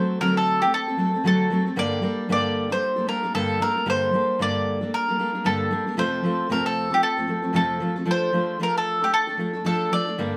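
A mandolin and a fingerpicked steel-string acoustic guitar begin together, both up front in a wet studio reverb that suggests a band playing live in one room. This reflective, tender pop piece moves at 114 BPM in 4/4 in D minor, with a gentle swing on the sixteenths. The dreadnought guitar gives a warm accompaniment from its low register into the middle, and its finger squeaks are audible. Above it, the picked mandolin carries the melody in a narrow upper range, its double strings lending a mellow, woody ring. The harmony moves from D7 to Gmadd9 at 1.8 seconds, then to F and Dm/F, before this passage cut from a longer piece ends at 10.4 seconds.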